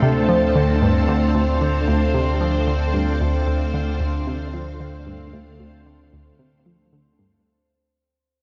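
A lush, vintage string machine sits up front, holding a sustained Dm7 chord through its ensemble chorus in this mysterious, expansive stretch of sequencer-driven space music, cut from a longer piece and fading out across its 7.5 seconds. Beneath it, a nasal analog drone with evolving pulse-width modulation anchors the low end, while a round, detuned analog pluck riff with ring-modulated edges and a filter sweep repeats through tape echo. A resonant, bubbling texture of random filter steps drifts in the background, and the whole mix carries the worn warble of old cassette tape, with dulled highs and a moderate plate reverb.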